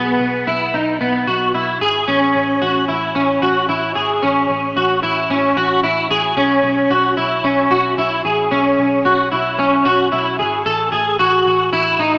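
Twangy, slightly broken-up electric guitar arpeggios, up front and drenched in ensemble chorus, digital delay and shimmer reverb, open this dreamy, floating dream pop fragment over a dark, round, foam-muted picked bass, as chords drift between Bsus4 and Amaj7 in a lush hall wash, all with the rough, small-speaker feel of a home demo.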